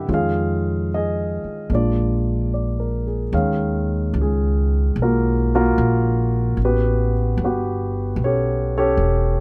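A grand piano and a pizzicato upright bass begin together, opening this short cut from a longer jazz ballad with a melancholic, smoky mood and an unhurried swung feel. The piano holds the accompaniment in its middle register, voicing rich chords that move from Dbadd9/F to Bb7 before the harmony shifts at 3.3 seconds to Ebm9 and later A13. Beneath it, the bass plucks low notes on steel strings with a woody, acoustic tone, sitting up front beside the piano's warm sound. Both parts play through the whole fragment, ending together at 9.4 seconds. The recording is close and detailed, with little reverb, so the instruments feel intimate and present.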